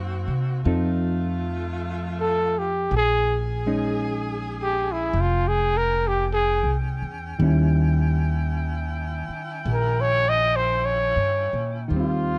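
Tender and late-night, this slow jazz ballad excerpt moves at 53 BPM in 4/4 with a gentle swung feel, drifting through Cm7b5, F7, Bbm11 and Eb7b9. A woody, thumpy pizzicato upright bass sits up front beside a dark, clean hollow-body electric guitar comping with the fingers, while a bright saxophone section holds sustained chords with vibrato behind them. At 2.2 seconds a breathy, whispered trumpet enters with the melody, its soft attack and vibrato sounding intimate and close on dry, detailed microphones.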